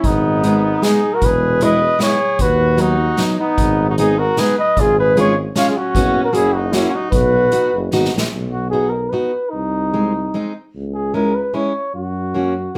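A band playing live in one room, heard through a moderate studio reverb, drives this bouncy, festive alpine folk dance in 3/4 at 151 BPM in B major, cut from a longer piece. Up front, a mellow flugelhorn carries the melody with light vibrato and a smooth top in a classical style, while a clear trumpet with vibrato plays a second line until 7.9 s. A soft-attack tuba, also up front, holds down the bass, and a fingerpicked, plugged-in steel-string acoustic guitar adds warm, concert-style accompaniment. A street-band drum kit with an airy, big-room sound, a medium-tuned snare and a boomy kick plays hi-hat, kick and snare, then closes its part with a fill that ends at 8.3 s. The harmony moves from G#m through E, B/D# and C#/G# to a F#sus4 resolving to F# and then B, before the closing stretch passes through G#/B# and C#m and ends on F#.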